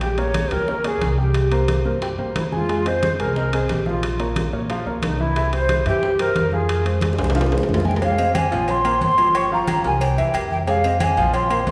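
Salsa at a driving, danceable 180 BPM in F minor, this short piece from a longer work rides a straight 4/4 feel. A mellow jazz flute carries the melody with a hollow, airy tone, a crisp chiff on its attacks, vibrato and softened highs. A woody upright piano provides accompaniment beneath it, while a dark, growly pizzicato upright bass with steel strings sits up front. The percussion layers ringing metal-shell timbales and agogo bells, heard close and dry, over thick-skinned, damped congas played with soft hands and round, low-tuned bongos and cowbell with a compressed, saturated edge, both set further back. A drum fill from 7.0 to 8.0 seconds leads into a new section at 8.0 seconds, where the harmony moves through Fm7, Gm7 and C7 back to Fm7, all bathed in the lush reverb of a church or concert hall.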